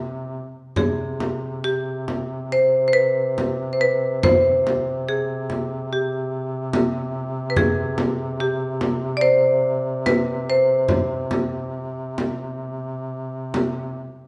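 Caucasian folk lament at 71 BPM in 4/4, with a longing, solemn mood and a rubato feel of uneven beats, cut from a longer piece. A close-miked duduk sustains a warm, vibrato-rich drone on C3 from the start to 14.3 seconds, while a marimba struck with hard mallets carries the melody between G4 and D5 in a bright, percussive voice placed up front. A small frame drum played with hard hands joins at 0.8 seconds, its sound compressed and saturated, all set in a wet recital-hall reverb with softened highs.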